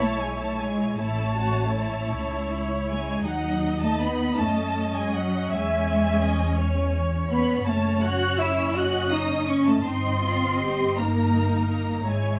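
A classical slow romantic movement for string orchestra, this yearning, melancholic passage moves in 6/8 at 54 BPM, its uneven beats stretched and pulled by rubato. A dark, expressive first violin section carries the melody high in its range, while a second violin section, smooth and even, sits in the background with its own line. Up front, a focused viola section fills out the accompaniment, and the cellos and a woody double bass section anchor the bass, all bowed with vibrato and a lush ensemble sound. The harmony drifts from C#m through Amaj7 and half-diminished colors toward a closing D#/G at 9.9 seconds, and the cut ends at 12.4 seconds. A light reverb gives the strings a sense of studio ambience around them.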